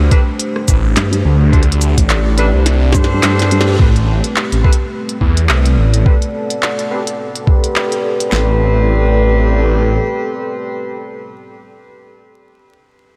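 Glitch hop at 106 BPM in A dorian with a playful, swaggering 16th-note swing, this excerpt opens on a drop where a gritty, thumpy boom bap kit with a high-tuned snare and a clicky, electronic glitch kit play alongside a swirling phased saw bass. A nasal vowel-sweep wobble bass cuts in from 1.0 to 3.8 seconds, a distant jazz-style horn section stabs through a low-pass filter from the start and gets a filter sweep from 3.8 seconds, and a moody analog pad is joined at 5.5 seconds by a mellow, wave-folded ambient pad, all under a layer of vinyl crackle.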